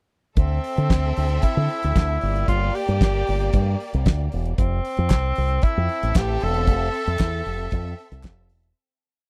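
At 0.4 s a damped 1970s drum kit, a fingered electric bass, a breathy tenor saxophone and a clear studio violin section all come in together on a short, driving and glamorous disco piece that sits entirely in a pre-chorus feel. Up front, the drums lay down a four-on-the-floor beat with open hats on the off-beats, a fat snare and a tight kick. Beside them, the round, dark bass runs through an envelope filter, playing a syncopated line with muted ghost notes and chromatic approach notes over chords moving from Dsus2 to Gm to Fmaj7. The saxophone carries the melody with a soft attack and light vibrato, its whispered, intimate tone phrased as short call motifs, while the focused violin ensemble adds a second line of swelling long bowed notes treated with tape echo. Crisp, saturated group handclaps join in the background on the backbeat at 5.1 s, and the whole dry, close studio sound begins fading out at 6.7 s.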